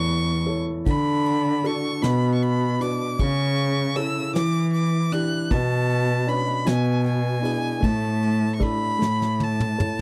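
Intimate and hopeful, this short excerpt of an acoustic folk-pop ballad in a straight 6/8 sets a rich, smooth bowed violin melody high above a grand piano whose action noise is audible, a dark, veiled muted cello carrying the bass up front, and a soft brush drum kit with a fat snare that enters at 0.9 seconds and closes on a fill at 9.0 seconds, all captured in a dry, close 1970s-style studio sound as the chords move from A through Bm and Em7 to a suspended Asus4 before resolving home.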